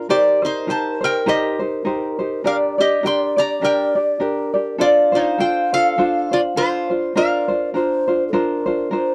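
Hawaiian music in Bb major at 102 BPM with a gentle swing, languid and relaxed in mood, cut from a longer piece. Up front, a lap resonator guitar carries the melody with a metallic, nasal slide tone played with fingerpicks, and a thumb-plucked tenor ukulele gives light accompaniment, while a distant, airy bass ocarina adds a tongued second line with vibrato over Cm7, Gm, F6 and Bbadd9. The sound is dry and close, like a 1970s studio recording.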